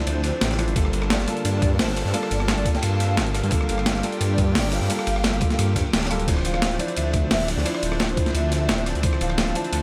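Liquid drum and bass with a soulful, rolling mood, cut from a longer piece, moving between Dm9 and Gm9 chords under a hollow, woody clarinet-like synth lead that warbles with vibrato and ensemble chorus and delay in the background, while a felt-muted upright piano plays soft, intimate accompaniment with audible action noise and a lush, thick unison pad pumps with sidechain behind them. Up front, a menacing detuned saw bass growls with tube saturation and filter swells, arriving at 0.1 seconds together with a gritty, tape-toned sampler-style breakbeat kit and a darker, crunchy breakbeat kit with rolled-off cymbals sitting further back. A thumpy, compressed electronic kick enters at 0.8 seconds and drops out at 9.1 seconds, and the whole mix carries a light reverb.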